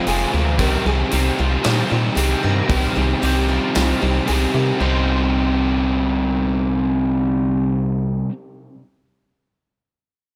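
Shoegaze-tinged dream-pop rock in C minor at 114 BPM, this brooding, melancholic fragment pairs two up-front overdriven electric guitars playing riffs, one crunchy with reverse reverb and one compressed with subtle chorus, over a hollow, dark, organ-like FM bass, while a shimmering, octave-doubled twelve-string acoustic guitar picks arpeggios through ensemble chorus and digital delay in the background until 5.6 seconds and a huge arena drum kit with a punchy kick and medium-tuned snare drives the opening until 4.4 seconds, all set in small room ambience as the harmony moves from Fm to Cm.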